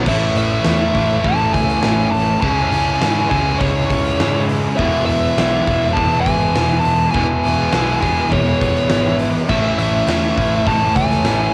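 Three overdriven electric guitars riff from the very start over a dark, round, foam-muted vintage bass, setting up a hazy, wistful stretch of shoegaze and dream pop rock. At 0.1 seconds a fuzz lead guitar enters with a high melody run through distortion and tape echo, the loudest voice here, while a huge acoustic drum kit with a fat snare, punchy kick, hi-hat and crash booms in a big room. Beneath them, a bright, double-tracked sludgy guitar carries the most weight, with a raw garage guitar soaked in lush chorus and a compressed, scooped guitar wrapped in reverse reverb tucked into the background. A very quiet, jingly tambourine sits distant in a large room. The chords move from A to C#m to E and back to A in a straight 4/4, and cassette-tape grain colors the guitars and drums of this home recording, which has light reverb and is cut from a longer piece.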